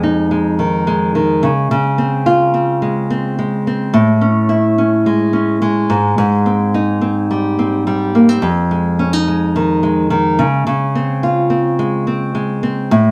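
A fingerpicked nylon-string guitar carries this sunny, nostalgic indie pop fragment on its own, its fresh strings sounding small and up front with a warbly pitch drift that lends a faded, wistful glow. Across 13.1 seconds it moves through lush seventh chords, from Fm7 to Dbmaj7, then Amaj7 and Abmaj7 before returning to Fm7 and Dbmaj7. A moderate studio reverb opens up the space around the guitar, giving this piece, cut from a longer work, a relaxed, live-in-the-room feel.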